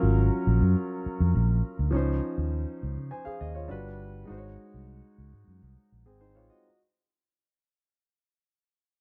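The recording has a dark production and the ambience of a small room, and this brief excerpt fades out across its full 6.6 seconds. It is lush, romantic 1970s-style soul at 102 BPM in a straight 4/4, tuned to A4 = 435 Hz. A concert grand piano carries the accompaniment up front, its tone intimate, smooth and vintage with deep bass, and the action noise of the instrument is audible. Beneath it, a fingered electric bass also sits forward in the mix with a bright, growly, amped edge, stopping at 6.5 seconds while the piano rings on to 6.8 seconds. The harmony moves through Gbmaj7, Dbmaj9, Gmaj7 and Ab7sus4, giving the short passage a plush, tender colour.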